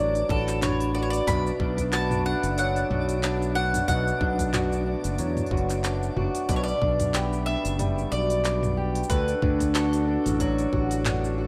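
A growly, up-front electric bass anchors this intimate, delicate folktronica piece cut from a longer work, as a bright, double-strung mandolin carries the swung melody through tape echo, a mellow soft-mallet vibraphone with slow motor vibrato shadows it in the background, a dark, woody, boxy ladder-braced acoustic guitar fingerpicks arpeggios, a tight, tape-warm electronic kick and an organic electronic kit of cabasa, handclaps, smooth hi-hat and toms keep time, a twinkling granular shimmer sparkles far back, and a reedy, slow-beating accordion joins with sustained chords at 1.3 s, all in a rough home-demo mix with lush hall reverb.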